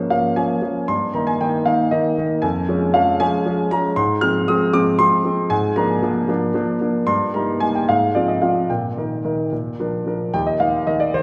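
A clear, up-front concert grand piano with a deep bass plays alone from 0.0 s to 11.2 s in a graceful, playful classical-period sonatina cut from a longer piece, moving in a rubato 6/8 at 77 BPM through chords such as Bbm7/Ab and Db/F before settling into Eb major at 4.0 s and closing on Eb, its natural tone tuned to A4 = 445 Hz and bathed in the wet reverb of a concert hall.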